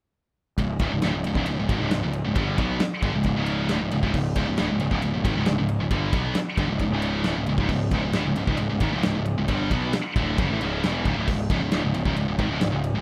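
A scooped, high-gain guitar sits up front in this relentless, epic heavy metal excerpt, churning a riff in C# minor at 135 BPM in straight 4/4 from 0.6 seconds to 13.0 seconds. Beneath it, a fuzz-driven picked electric bass growls just as prominently, its overdriven tone blending direct and amped sound. Two further guitars, one distorted and one overdriven and double-tracked, also play riffs very quietly and compressed, thickening the bright wall of sound. A big acoustic rock drum kit with a punchy kick, medium-tuned snare, and bright crash and ride cymbals drives the whole passage, its shell sound dark and smooth against a big room. The mix is a rough home demo with little reverb, holding on a single C# minor chord throughout.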